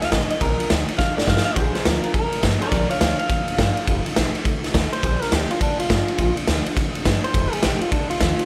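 Rockabilly in Bb major at a swinging 208 BPM, this upbeat, rollicking excerpt rides on Bb and F7 chords. A slightly broken-up, lo-fi electric guitar carries the melody with tape echo over a bright picked steel-string acoustic with audible finger squeak sitting in the background, while a woody, growly pizzicato upright bass anchors the low end. The up-front garage drum kit has a gritty, saturated character with a punchy kick and a pumping stone-room sound, and it plays a fill from 1.0 to 1.6 seconds, all under a light reverb.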